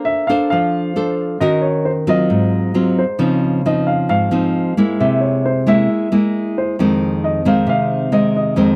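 A straight 4/4 bossa nova pulse carries this short passage, cut from a longer piece, its mood wistful and melancholic. A fingerpicked nylon-string guitar plays the accompaniment up front, full-bodied and classical in tone, ranging from its low bass to the upper register. Above it, a dark grand piano sings the melody within a narrow high band, its mellow, natural voice fading quickly with short sustain and sitting behind the guitar in the balance. The harmony drifts from Bbmaj9 through Ebm7, Ab6 and Dbmaj9 before a tense C7b13 at 5.0 seconds resolves to Fm7 at 6.8 seconds. Light reverb touches a dry, close recording with a 1970s studio character, keeping the two instruments intimate.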